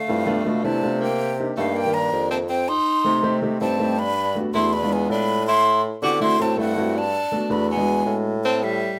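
This short excerpt of sophisticated, sunny jazz opens with a breathy flute carrying the melody up front, its straight tone and soft attack given lifted highs and an expressive touch. Beneath it a clear tenor saxophone plays a second line with light vibrato and a jazz sensibility, while a bassoon in a classical style supplies the bass with its own gentle vibrato and soft attack. A baby grand piano enters at 0.1 seconds as accompaniment, intimate and natural, with its action noise audible close up. The straight 4/4 moves at 162 BPM in G major, passing through rich extended harmony such as Cm9, F9, E7b9 and Gmaj9. A moderate studio reverb places the small ensemble in a polished room, and the piano falls away at 8.3 seconds just before the others finish.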